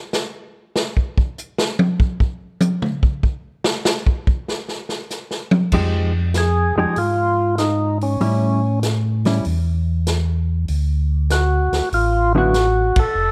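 A vintage acoustic drum kit opens this bluesy, soulful soul jazz organ trio, with dark cymbals and a punchy kick in a natural studio room. At 5.7 seconds a round, mellow tonewheel organ bass and a clean, compressed hollow-body electric guitar join over Fm9, A7 and D. A percussive organ melody with key click and a slow rotary speaker follows at 6.4 seconds, leading to a band accent at 12.9 seconds in this swung passage under light reverb.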